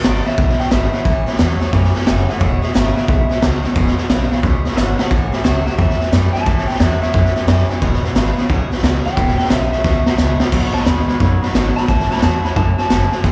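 A swung eighth-note shuffle at 177 BPM in 4/4 drives this rowdy, upbeat rockabilly cut in E major, taken from a longer piece and played live through a club PA. Up front, a raw garage drum kit lays down a high-tuned snare, boomy kick, hi-hat and crash, its sound gritty and saturated with a rolled-off top, and fills arrive around 4.8 and 9.9 seconds. An upright bass plucks a woody, thumpy low end beneath a twangy, scooped electric guitar riffing in its lower register through spring reverb, while a bright, boxy acoustic guitar picks a swing-style accompaniment further back in the mix. Carrying the melody throughout is a clean electric guitar solo played through a small old amp, dark, lo-fi and slightly broken-up, with slapback echo and analog delay. The chords move between E6, A6 and B6, giving the whole thing a loose, sweaty dance-hall energy.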